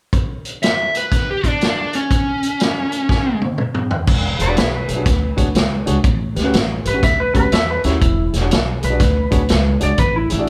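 A swung 4/4 shuffle at 122 BPM drives this soulful, gritty electric blues in E mixolydian, cut from a longer piece. A vintage acoustic drum kit sits up front with a punchy kick, a medium-tuned snare and dark cymbals, its top end rolled off. An overdriven lead guitar picks a smooth opening melody from 0.6 seconds, and a drum fill follows at 3.1 seconds. At 4.1 seconds the harmony lands on E13, moves to A13 and returns, as a woody, thumpy pizzicato upright bass enters and an electric slide solo begins. From 4.4 seconds a clean, twangy lap steel carries the second line in fingered volume swells. A concert grand piano with deep bass and audible action noise adds intimate, vintage-toned accompaniment further back, and light reverb frames the band as if it were playing live in one room.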